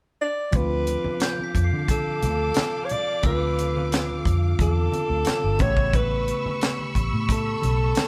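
Lush 1970s-style soul in a smooth, cinematic mood, heard as a short cut from a longer piece with a straight 4/4 feel. A breathy alto saxophone carries the melody from 0.2 seconds, close-miked and up front, with light vibrato and scooped notes in a jazz style. From 0.5 seconds the band enters together: a tight, polished funk drum kit with a high-tuned snare, a dark, round, foam-muted fingered electric bass, and a bright, barky tine electric piano lightly overdriven through a combo amp with phaser. A symphonic violin section adds a lush, bowed second line with soft attack and expressive vibrato, while very quiet, low-tuned congas with thick skins sit underneath. A glockenspiel struck with brass mallets adds a sparkling, bell-like shimmer in the background from 1.2 to 5.6 seconds, as the harmony rests on Dm9 before moving to A9 at 5.6 seconds. The group sounds like it is playing live in one stone room, with moderate reverb giving the blend a natural depth.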